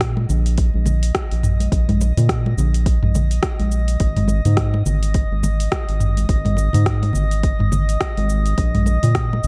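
Dark, digitally ambient production frames this meditative, mystical organic downtempo piece, where a round, mellow analog bass with sidechain pumping sits up front beside an overdriven electronic kick recorded in a large room, an afro-pop drum kit of metallic hi-hats, rim clicks, shaker and toms, bright close-miked congas struck with hard hands from 0.2 seconds, and a calm, glassy texture of drifting overtones washed in chorus and shimmer reverb.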